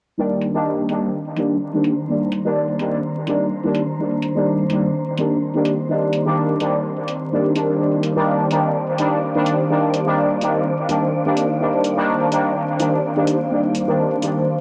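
Deep and cavernous, this dub techno excerpt in C minor moves at 126 BPM with a light 16th-note swing, resting on a single Cm7 chord. Up front, a juicy, detuned sawtooth polysynth fires resonant stabs through chorus, phaser and dub echo while a filter sweep runs across it, over a soft, breathy pad holding sustained chords and a dark, wind-like tuned noise texture drifting in the background from 1.2 seconds. A low-passed electronic hi-hat, re-recorded in a small room, ticks beneath it all, and the mix sits in a lush digital hall reverb with a layer of vinyl crackle.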